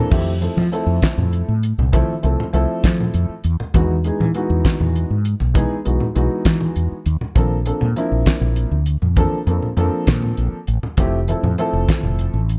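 Electric jazz fusion in a straight 6/8, this short cut from a longer piece feels soaring and funky, moving through lush major-seventh and ninth chords over a dark, warm studio reverb. A boxy, worn grand piano comps up front while a round, mellow fretless bass sits alongside it, and a damped 70s drum kit drives with a fat snare, tight kick, hi-hat and crash. Low-tuned congas played with soft hands add a thin-skinned, vintage patter in the background.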